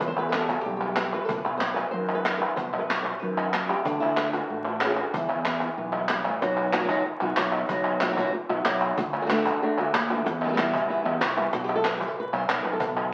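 Up front sits a dark, fingerpicked flamenco guitar, carrying the melody across a range from E2 to C5 in this short excerpt cut from a longer flamenco piece at 188 BPM. The mood is mournful yet fiery, with the harmony circling through E minor, B and D before falling away to a bare, chordless moment at 11.5 seconds. Crisp palmas hand claps enter at 0.2 seconds and sound distant, as if caught in a large room, even while standing forward in the balance. A snappy cajon with snares sits in the background, its small-room sound tucked behind the claps. Beneath them, a mellow fretless electric bass gives a round, punchy low end. The whole recording is bathed in wet studio reverb and carries the crackle of a very old 78 rpm record.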